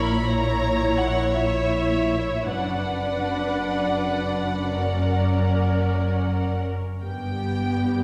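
A slow, rubato classical string-orchestra movement in 12/8 at 48-58 BPM, yearning and solemn, where rich, vibrato-laden violins sing the melody over a second, more distant violin line that stops at 6.4 s, while focused, clear violas accompany and bowed cellos join woody, dark double basses on the bass, all set back in a wet scoring-stage reverb on this cut from a longer piece.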